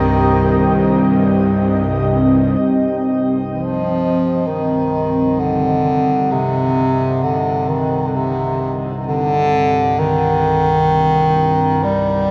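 A desolate, cavernous dark ambient drone in free time, cut from a longer piece, where a clear, present bass clarinet carries a classical-style solo melody up front, bathed in shimmer reverb and delay. Above it, a deep, moody pad of detuned sawtooth and sine layers with a sub octave holds sustained chords through chorus, while a tense, string-like bowed drone with vibrato and a noise layer sits lowest, fading in from 2.6 seconds. The whole piece hangs in a wet cathedral reverb with a 6.7-second decay and carries the texture of cassette tape.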